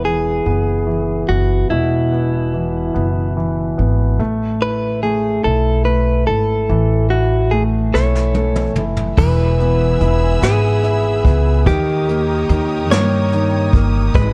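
Heartfelt and tender, this six-eight pop ballad in E major moves at 48 BPM, with a clean, compressed electric guitar carrying the melody up front over an intimate grand piano with audible action noise and a woody pizzicato upright bass, until a distant, roomy brush kit with dark cymbals enters on a fill at 7.9 seconds and a lush, bowed string section with vibrato adds sustained chords from 9.2 seconds, all within a dark, warm production.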